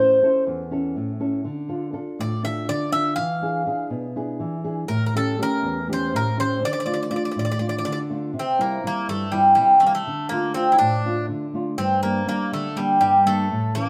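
Greek folk for a bouzouki band, this short excerpt from a longer piece is intense and driving, moving at 244 BPM counted in eighths in a straight 7/8 metre and set in D minor. The Greek bouzouki carries the melody across the full 13.9 seconds, its picked double strings sounding metallic and warm, with some courses doubled at the octave, and it sits up front in the mix. Beneath it, a nylon-string guitar plays the accompaniment throughout, thumb-plucked on fresh strings with a dark, small tone that also sits close and present. The harmony opens on A and passes through Dm, E7 and A7 before settling back on Dm, then the second section from 8.3 seconds moves through C, Dm and Gm. The two players sound as if performing live together in a single space, wrapped in a wet stone-room reverb that lends the performance a resonant, echoing air.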